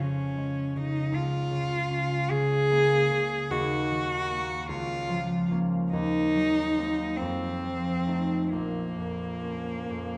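Romantic classical music for cello and harp, this tender, serene passage in Bb minor moves in a slow, rubato 6/8 at roughly 43-53 BPM, cut from a longer piece. A clear, smooth bowed cello with vibrato sings an even melody up front, while a concert harp, fingerpicked with a ringing acoustic tone, supplies accompaniment beside it, both playing throughout the 10.2 seconds. A wet concert hall reverb surrounds the pair as the harmony drifts from Db/F through Ebm and Cm7b5/Eb to F7b9, settling on Bbm at 8.5 seconds.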